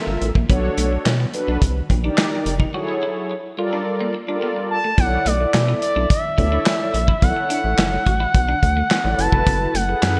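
A nasal, expressive sawtooth synth lead with vibrato enters up front at 4.7 s, carrying the melody over this danceable, slick early-eighties boogie funk cut at 107 BPM in a straight 4/4. Beneath it, a rubbery, bouncy square-wave bass and a dark studio drum kit with a tight kick, handclaps, hi-hat and gated reverb drive the groove. Detuned, warbling synth brass with chorus supplies the accompaniment, and a clean, picked semi-hollow guitar riff sits in the background, all over minor ninth and eleventh chords. A break runs from 2.7 s to a new section at 5.0 s, and the whole mix carries a bright 1980s-style digital sheen and a lush hall reverb.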